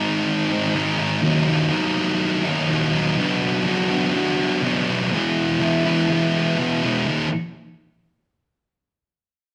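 A moderate stone-room reverb hangs over this live-in-one-room rock fragment, cut from a longer piece, where a thick, double-tracked fuzz electric guitar sits up front and plays a dark, cathartic, picked and distorted solo from 0.0 to 7.3 seconds over shifting chords that settle on a bare power chord at 7.1 seconds.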